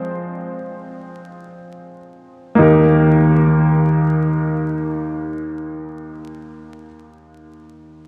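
A bright, woody upright piano opens this short pop fragment alone, slowing down over its first 2.6 seconds as it rests on an F minor chord. Played in free time and in E-flat major, with tuning set to A4 = 441 Hz, the piano serves as the accompaniment part, ranging from Eb2 up to C5, and it sits up front with a polished, present tone. At 2.6 seconds the harmony settles onto E-flat, and the piano continues until 8.1 seconds. The mood is tender and heartfelt, and the dreamy mix is soaked in a huge ambient reverb with a 5.1-second decay, flecked with the crackle of vinyl. The passage is cut from a longer piece.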